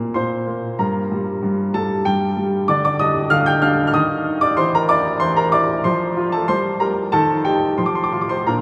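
Graceful and cheerful, this brief cut from a longer classical-period piano sonatina moves at 94 BPM in 3/4 with a straight feel. A solo baby grand piano carries everything from 0.0 to 8.6 seconds, ranging from G2 up to G6 with a warm, natural tone, short sustain and an up-front presence. The harmony passes through G minor, a D minor chord with an added eleventh, a C7 over E, F and E-flat before settling on a bare F fifth near 7.8 seconds. A brief unharmonized moment around 3.9 seconds adds a touch of poise to the phrase. The piano sits in a vast, echoing cathedral space whose wet reverb, with a 5.8-second decay, lets each note bloom into a lingering halo.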